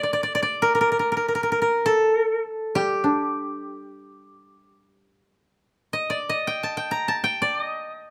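Calm and austere, this brief fragment of Japanese chamber music unfolds in free time in D miyako bushi, with a bright, woody fingerpicked koto carrying the melody up front throughout its 8.1 seconds while a second, mellower koto adds a low, close accompaniment between 2.8 and 6.0 seconds, both dry in tone yet framed by a light touch of reverb.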